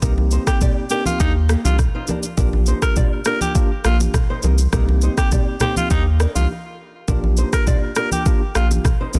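A breathy alto saxophone carries the melody from 0.5 to 8.7 seconds, its raspy, gritty pop-style tone shaded with vibrato and a trail of delay. This short, breezy and joyful afrobeats passage in Bb major moves at 102 BPM in a straight 4/4 over a Cm7 to Bb6 progression, with a brief break at 6.5 seconds. A thick, saturated sub bass sits up front with a fast attack and long sustain, alongside an electronic afro-pop kit built on a deep kick, rim click and shaker, its snare softly clipped. A mellow tine electric piano supplies clean accompaniment through its built-in speakers, while a small, thumb-plucked nylon-string guitar plays a riff with audible finger squeak and its own delay. Bright, close congas struck with hard hands sit in the background, and the studio reverb and dense, heavily limited master give the piece a polished modern sheen.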